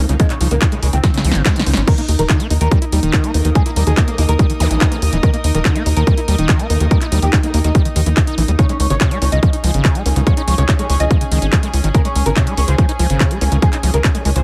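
A driving 143 BPM psychedelic trance groove in straight 4/4, cut from a longer piece, rides on an up-front, heavy electronic kick and a punchy, tape-warm techno kit of snare, handclaps, hi-hat and crash, with a drum fill at 1.0 s. A tight, dark sequencer bass of sawtooth and ring-modulated pluck anchors the low end beneath a squelchy, distorted acid riff with sidechain pumping and digital delay, while a woody, fretless oud carries the alien, intense melody through phaser, sidechain pumping and digital delay. Quiet layers fill the space: a nasal vowel-sweep wobble bass in intermittent passages, a detuned pulsing gated texture holding Eb4, a reedy bowed string section in the background from 1.9 s, and a brief electronic zap at 4.6 s, all set in digital ambience.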